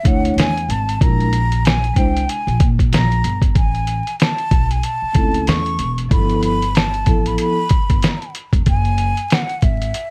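A gritty, sampler-style drum kit sits up front in this cool, smoky jazz-hop excerpt, its thumpy kick, fat snare and hi-hat overdriven and compressed as if re-recorded in a small room. Beneath it, a woody, dark pizzicato upright bass carries the low end with steel-string weight. A mellow vibraphone played with soft mallets rings through the mids with a slow motor vibrato, comping through rich chords such as a rootless Bm11 and an Amaj7 before dropping out at 7.5 seconds. On top, a breathy concert flute sings the melody with tongued notes, expressive vibrato and lifted highs. The groove swings lightly, the sound stays dry and close, and a layer of vinyl crackle adds a dusty, old-record patina.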